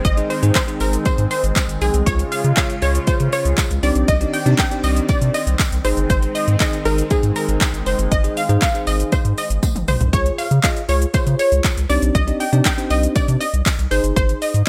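Dance-pop at 119 BPM with a bittersweet yet energetic mood, this short cut from a longer piece rides a loop of Ab, Db and Cmadd9 under bright 1980s-style digital production with light reverb. An overdriven deep house kit of deep kick, metallic hats, handclaps, shaker and toms sits up front with a round, nasal analog bass, while a lush, punchy unison pluck carries the melody through chorus and digital delay, and a bell-like tine electric piano adds clean accompaniment. An airy, evolving supersaw swell holds sustained chords until a drum fill at 9.6 seconds, dropping out at 10.1 seconds, as a very quiet, jingly tambourine shimmers in the background and sidechain pumping makes the bass, pluck, piano and swell breathe with the kick.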